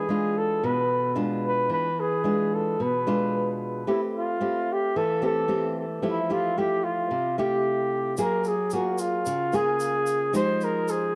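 Bossa nova in F major at 111 BPM in a straight 4/4, this romantic, sunny excerpt is cut from a longer piece. A breathy flugelhorn carries the melody between E4 and C5, mellow and whispered with light vibrato and a soft attack, sitting up front yet sounding distant and roomy through an analog delay. Beside it, a fingerpicked nylon-string guitar with fresh strings and audible finger squeak supplies classical-style accompaniment from B2 to Ab4, also up front. The harmony moves from E7b9 through Am7 and Fmaj9, then shifts at 8.2 seconds to Gbmaj9 and Fm9 as a new section begins. At that point a grainy, bright egg shaker joins in a live room sound, playing until the close at 11.2 seconds. Moderate spring reverb and small room ambience give the mix an echo-heavy, intimate atmosphere.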